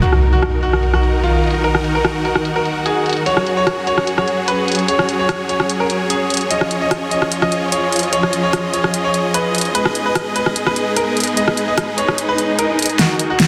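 A half-time 4/4 pulse at 148 BPM drives this chaotic, menacing heavy wobble dubstep excerpt in Eb minor, its layered electronic kit of hi-hat, rim click and a huge overdriven snare sitting up front under a filter sweep, with an impact at the start, a swell near 12.3 s and a drum fill closing at 13.5 s. A bright concert grand piano carries the melody with worn 12-bit sampler grit and dub echo, over detuned supersaw chords moving from Ebm through Gbsus2 and Dbadd9/F to Abm, while a rich bowed string section adds vibrato texture. The dense, heavily limited master sits in a lush hall reverb.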